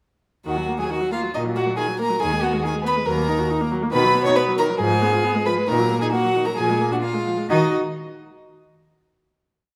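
From 0.5 s a string quartet enters together on a quick, dramatic, restless classical-period movement in a straight four-beat metre, every player bowing with a reedy gut-string tone in period style. The first violin carries the melody close to the ear, its bow airy and its sound slightly nasal, while the second violin sits up front doubling the tune an octave below. The viola fills the middle with flowing broken chords and sustained chords, coloured by a light vibrato. Beneath them the cello gives a nasal bass on the beats and sustained bass notes, its warmth anchoring the group. The theme runs until 7.5 s, wandering through darker chords to a dominant seventh before settling on a final chord that rings on to 9.3 s in the wet, reverberant space of a recital hall.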